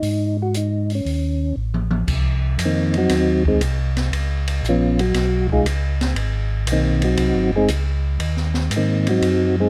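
Bluesy and swinging, this soul jazz organ trio excerpt moves at 118 BPM in Ab mixolydian, with a soft, flute-like, percussive tonewheel organ carrying the melody over a round, dark organ bass, both treated with chorus vibrato and a slow rotary speaker, while an open acoustic drum kit with dark cymbals, a high-tuned snare and a boomy kick plays a fill from 1.6 to 2.1 seconds that leads into an organ solo over Ab7, Db7 and Ab7 chords, all captured up close with little reverb.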